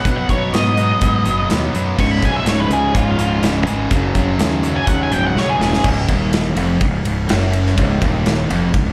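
A dark, fuzzy octave-fuzz lead guitar solos over picked riffs from a bright cranked stack guitar, an overdriven electric guitar with slapback echo and a very quiet, double-tracked semi-hollow guitar, joined by a growly, up-front fuzz fingered bass and a punchy big rock drum kit with bright cymbals, all in a driving, confident classic rock groove at 124 BPM that, after a drum fill at 5.4 seconds, settles at 5.8 seconds into Db major as the lead and semi-hollow guitars drop out, heard as a live gig through a small club's PA with roomy reverb.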